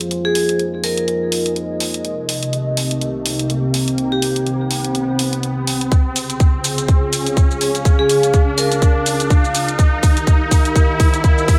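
Swung sixteenth-note hi-hats and shaker drive this gritty, bouncy bass house build-up at 124 BPM in 4/4, their bright electronic sound sitting in a small room. Underneath, a dark analog pad holds sustained sawtooth chords with a sub octave and slow attack, colored by chorus and phaser and pumping against the beat. It moves from Fm through Cm and Db to Eb. A deep ambient pad adds a detuned, unison texture with a long release and its own reverb, pumping in the same way. A vibraphone struck with hard mallets rings out a short, metallic melody with dub echo at the start, then returns briefly at 8.0 seconds. An electronic riser climbs in from 1.6 seconds, and a layered, up-front kick drum arrives at 5.9 seconds to push the passage toward its peak, all set in a moderate digital room reverb.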